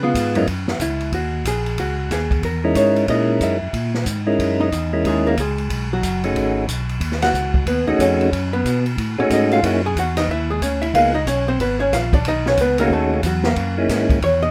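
Greasy and soulful, this swinging soul jazz organ trio features a clean, compressed hollow-body archtop guitar soloing up front from 0.5 seconds, a fat, lightly overdriven tonewheel organ bass with chorus vibrato, key click and a slow rotary speaker, an open acoustic drum kit with dark cymbals, a high-tuned snare and a boomy kick, and a mellow, round percussive organ melody with third-harmonic percussion that settles in at 2.6 seconds, all set in light reverb.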